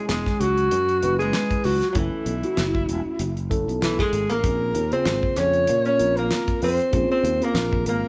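Electric jazz fusion at 96 BPM in 4/4 with a light sixteenth-note swing, slick and funky in mood, drawn from a longer piece and moving from F#m9 to Bbm9 at 4.4 seconds. A breathy, whispered alto saxophone carries the melody up front with vibrato and a soft, intimate attack, while a dark, clean hollow-body archtop guitar plays a picked second line beneath it, and a mellow tine electric piano with phaser fills in the accompaniment. A growly, punchy fretless bass and a dry 70s drum kit with a fat snare and tight kick enter at 0.1 seconds, the whole band captured live in one room with a moderate large studio reverb.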